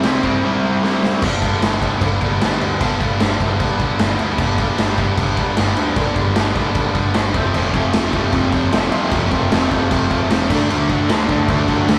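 This excerpt has the rough, tube-saturated feel of a rehearsal room, with a touch of light reverb. It is an energetic, rebellious punk rock track in a straight four. Up front, a raw garage drum kit pounds out kick, snare and crash in a stone room; its dark, smooth top is rolled off and its kick is punchy, with a drum fill from 0.8 to 1.2 seconds. Behind it, a double-tracked high-gain guitar and a tight distorted guitar churn out riffs over a C chord that moves to G, then F and D. A sludgy overdriven guitar sits forward in the mix, dropping out at 1.2 seconds and returning at 7.5 seconds. Underneath, a modern bright electric bass adds a direct, picked low end in the background.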